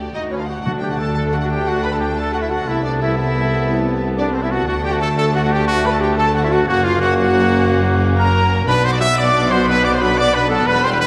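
Heroic adventure film score in a straight 12/8 at 120 BPM in D mixolydian, where a bright, up-front trumpet punches out stabs over a lush bed of bowed strings, with a distant violin section carrying the melody, second violins, flute, oboe and clarinet adding supporting lines, violas filling the harmony, mellow French horns holding chords, cellos, double basses and a roomy tuba anchoring the bass, and a round timpani hit at 0.7 s, all bathed in a wet concert hall reverb as the chords move from D through Amadd9/C and F# to Bm.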